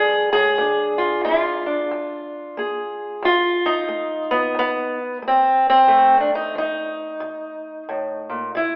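Swaggering and laid-back, this short cut from a longer acoustic country blues piece rolls along with a swung feel in four. A lone fingerpicked steel-string parlour guitar, dark and boxy and placed up front, moves between F7 and Bb7 chords across the whole 8.8 seconds. The sound has the narrow, filtered quality of a telephone line, set in the moderate reverb of a church or concert hall.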